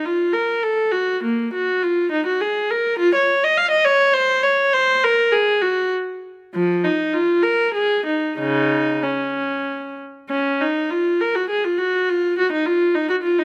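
Solemn and grave, this short classical passage from a baroque-style suite movement is given to a single unaccompanied viola in Db major. It moves in 3/4 at roughly 90-107 BPM, and the rubato feel lets the pulse ease and stretch freely. The bowed viola has a gut-string, period-style tone, reedy in its body with a smooth top, and ranges from Db3 up to F5. The opening idea runs to 10.3 seconds, then returns and carries on until the cut at 13.4 seconds. Close, detailed microphones place the player up front, with a light reverb around the sound.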